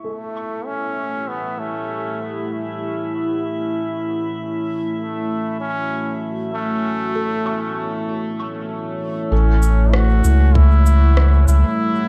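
A swung sixteenth-note feel at 97 BPM in 4/4 underpins this spacious, hazy ambient dub excerpt in A mixolydian, cut from a longer piece and resting on an A7 chord. A nasal, straight-muted trombone carries the melody throughout with light vibrato and a soft attack, its phrases trailing into dub echo, while a deep, moody sawtooth pad with a slow attack enters at 0.7 seconds, thickened by chorus and its own reverb. In the background, a felt-muted upright piano plays mellow arpeggios with audible action noise, passing through dub echo and a low-pass filter sweep that runs until 9.3 seconds, alongside a glassy, drifting harmonics texture that ends at that same point. From 9.3 seconds a round, up-front sine sub bass with tube saturation arrives, joined by electronic shaker and rim click soaked in echo and a single tight electronic kick sitting far back. A lush hall reverb of moderate size gives the whole scene a roomy, floating depth.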